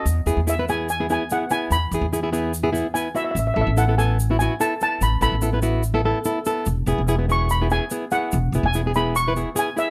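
The recording has a dark, softly reverberant production, and this short calypso excerpt is cut from a longer piece with a carefree, festive mood at a brisk 145 BPM in E major. A mellow, shimmering steel pan, played with soft rubber sticks, carries the melody up front with a vintage, band-limited metallic tone. Beneath it, a fingerpicked flamenco guitar supplies acoustic accompaniment with a warm presence, also up front. An upright bass played pizzicato on steel strings gives a woody, thumpy low end, while a grainy, bright egg shaker sits close but quietly in the mix. The harmony moves from E to Asus2 at 3.4 seconds and returns to E at 6.7 seconds.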